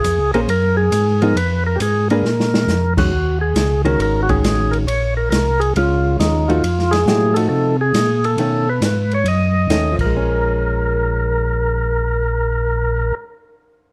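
A late-night, smoky soul jazz organ trio excerpt swings in 4/4, with a percussive tonewheel organ carrying the melody through a slow rotary speaker and plate reverb, a round, mellow tonewheel organ holding down the bass with chorus vibrato and key click, a dark, compressed hollow-body guitar comping from 0.3 seconds, and a boomy, rolled-off acoustic drum kit that drops a fill at 2.2 seconds before falling away at 10.1 seconds.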